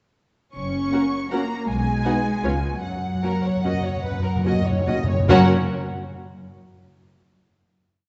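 A festive, sweeping classical ballroom waltz in F# major opens at 0.5 s with a vibrato-laden violin melody over smooth cellos that double the tune at the octave, as bowed double basses mark the beats in 3/4 at a rubato 139-174 BPM. A second violin line, clear violas and dark French horns in the background fill in lush after-beat and sustained chords, and close, dry timpani join at 2.8 s, rolling into the louder passages. The short, complete piece rings out in a wet concert hall and closes on a final chord at 5.3 s.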